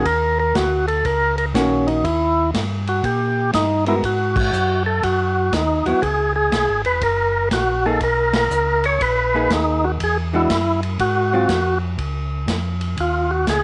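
A swinging 4/4 groove at 121 BPM drives this bluesy soul jazz organ trio, taken from a longer piece, with a vintage drum kit (dark cymbals, tight kick, medium-tuned snare and a rolled-off top) entering at 0.1 s beneath a mellow, round tonewheel organ bass with key click and slow rotary speaker. Up front, a percussive tonewheel organ carries the melody with light overdrive, second harmonic percussion and its own slow rotary speaker, while a clean, picked hollow-body jazz guitar comps until 11.5 s. The band hits two accents together, and at 12.0 s the melody organ takes a short solo, the whole trio sitting in a small room with light reverb.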